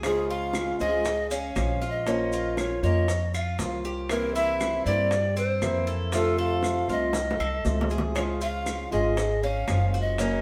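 A wet stone room gives this short live-band clip a reverberant, intimate sound, as if the whole group were playing together in one space. It is sultry, nostalgic Latin music in the Cuban son and guajira style, cut from a longer piece, with a straight feel in four. A polished, airy pan flute carries the melody, close-miked with a soft attack and gentle vibrato, over a boxy, fingerpicked swing-style acoustic guitar and the bright, metallic arpeggios of a Cuban tres with its doubled strings. The upright bass is thumpy, dark and woody, plucked on steel strings and set forward in the mix. Round, low-tuned bongos played with soft hands and grainy, mellow maracas sit in the groove, while distant claves in the background drop out at 9.9 s. The chords move from Db through Bbm, C7 and F before returning to Db, and a drum fill arrives at 7.1 s.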